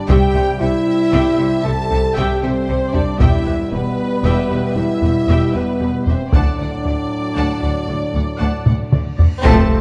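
A dark production in a roomy scoring-stage reverb carries this adventurous, majestic cinematic score at 77 BPM in a rolling 12/8, moving through C, E minor and D. Close, dry taiko struck with heavy sticks drives beneath sustained chords from dusky French horns and mellow trombones, while a background studio violin section carries the melody, a clear symphonic violin section adds a lush second line, and expressive violas with portamento, focused cellos and smooth double basses fill out the bowed strings. A drum fill at 8.7 s and a reverse cymbal at 9.3 s lead into a huge accent and impact at 9.4 s, where an airy baroque flute and a distant trumpet stab join, followed by a dark sub drop at 9.6 s.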